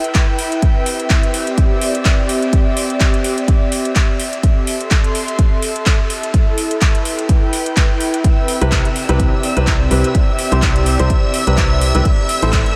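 Euphoric and joyful, this piano house excerpt moves at 126 BPM in 4/4 with a light 16th-note swing, set in C major and tuned slightly below standard pitch. A punchy, up-front electronic kick anchors the groove alongside a house kit of handclaps and metallic hi-hats, while an airy, breathy pad with chorus and sidechain pumping floats beneath from the start. The harmony drifts through Em, Cmaj7 and Am, and at 8.2 seconds a shimmering vintage string machine of violins enters with sustained, bright chords, treated with ensemble chorus and pumping in step with the kick. Moments later, at 8.6 seconds, a clear, polished baby grand piano riff arrives with tape echo, joined by a hollow, organ-like FM bass whose dark, decaying notes sit low in register. Everything is bathed in a huge ambient reverb, giving the track a dreamy, soaked atmosphere.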